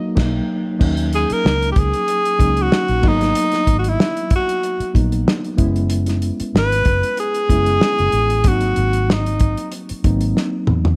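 Silky and bittersweet, this short excerpt of lush 1970s-style soul moves at 94 BPM in 4/4 with a light swing on the sixteenths. It opens with a band accent as a breathy tenor saxophone takes the solo melody up front, its jazz-style phrasing marked by light vibrato, scooped notes and a smooth top, until it drops out at 9.7 seconds. Beneath it, a mellow, reedy electric piano holds the accompaniment through its built-in speakers with a fast tremolo, while a vintage foam-muted fingered bass supplies a round, amped low end. The acoustic drum kit sits up front with dark cymbals, a medium-tuned snare and a punchy kick, closing on a fill from 10.4 seconds. The harmony drifts from Bmaj7 through D#m7, G#m9 and F#9sus4 to G#7, all framed by a small room ambience.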